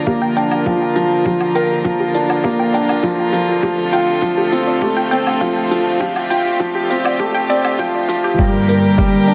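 A straight 4/4 groove from a muffled, thumpy electronic kick and smooth, layered electronic hi-hat and woodblock drives this moving, hypnotic piano and strings electronica piece, built around a soft, mellow felt-muted upright piano riff with delay, sitting up front over sustained chords from a floating, sul tasto chamber string section that pumps with the sidechain. A warbling, lo-fi pluck plays arpeggios in the background, thickened by chorus, cassette tape character and delay, as a filter sweep on it builds up until 8.4 seconds over chords moving from Bb through F6 to Gm. At 8.4 seconds a dark, lush symphonic cello section enters on a bowed bass note with vibrato and portamento, everything set in a reverberant recital hall.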